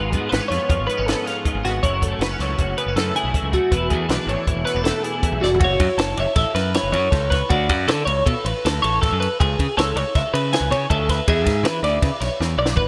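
Bright and wistful, this excerpt of math rock and midwest emo moves at 159 BPM in 5/4, with a twangy twelve-string electric guitar spinning chorus-and-delay arpeggios over a second twelve-string carrying ensemble-chorused accompaniment until 7.5 s, a bright picked bass, and a compact cocktail kit with a high-tuned snare and dark cymbals, until a warmer twelve-string melody with subtle chorus enters at 5.4 s over chords drifting from C#7/G# through F#m7 and Dmaj7 to E7, all set in a lush hall reverb with bright 1980s-style digital production and closing on a drum fill at 12.4 s.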